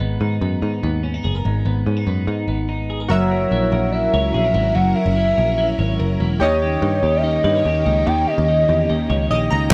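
Indie pop at 145 BPM, bittersweet and restless in a dark, lightly reverberant mix, opens with a bright, twangy twelve-string electric guitar playing arpeggios through lush chorus over a round, foam-muted picked electric bass, then at 3.1 seconds a hollow, woody clarinet-like synth lead takes the melody with vibrato and slapback echo, joined by glossy, airy chorused retro synth keys and a full-bodied vintage string machine holding sustained chords as the harmony moves from G#madd9 to F#7 and D#7, with a synth keys fill at 9.1 seconds closing this excerpt of a longer piece.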